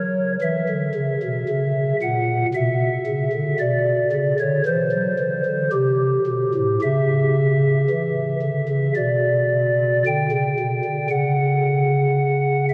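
Dark production and a cathedral reverb with a long 5.4-second tail surround this grave, solemn chorale-style classical piece, a short excerpt cut from a longer work. A pipe organ plays alone on a stopped flute stop, sitting up front with a soft, hollow, mellow tone, baroque voicing, chiff and tremulant, ranging from A2 to G5. Moving with rubato in a slow 4/4, the harmony passes from F#7 through Bm, C and C#m back to Bm before the chords fall away at 11.1 seconds.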